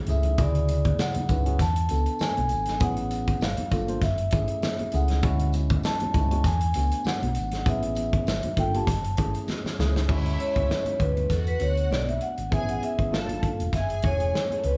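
Lush 1970s-style soul at 99 BPM with a light sixteenth-note swing and a smooth, warm mood, this excerpt from a longer piece sets a soft-mallet vibraphone melody, ringing and mellow, over clean tine electric piano, a round, dark hollow-body bass, a punchy studio drum kit with bright cymbals, high-tuned congas and a faint jingly tambourine, cycling through chords like Dmaj9#11, E7sus4 and Amaj9 in a lightly reverberant room until a drum fill at 9.5 seconds opens a vibraphone solo at 10.1 seconds, where a rich, bowed string section with vibrato joins as a second line.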